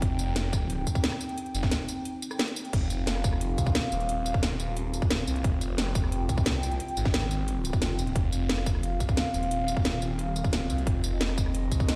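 A straight 4/4 pulse at 177 BPM drives this dark, aggressive slice of technical drum and bass, sitting in a drop on an F5 chord from the first second. A tight, layered electronic kick and a tape-warm kit with cracking snare, metallic hi-hats, crash, rim click and tambourine stand up front beside a thick, swirling detuned saw bass, phased and tube-saturated, that pumps against the kick. Beneath them a deep, moody analog pad holds sustained chords with chorus and a slow attack. The whole mix rings out as if played on a big sound system in a bare room, with large studio reverb.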